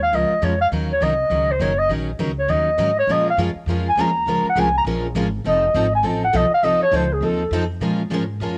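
A cassette-taped home recording in a snug booth catches a fiery, virtuosic jazz manouche excerpt in Bb minor at 203 BPM with a 60% eighth-note swing, where a dark, breathy clarinet with subtone, scooped notes and vibrato carries the solo melody through tape and plate reverb until 7.5 s, over a woody pizzicato upright bass and an up-front picked dreadnought guitar with audible finger squeak, joined at 3.1 s by a bright, picked concert guitar as the chords move from Bbm7 through Ebm7 and F7#9 back home.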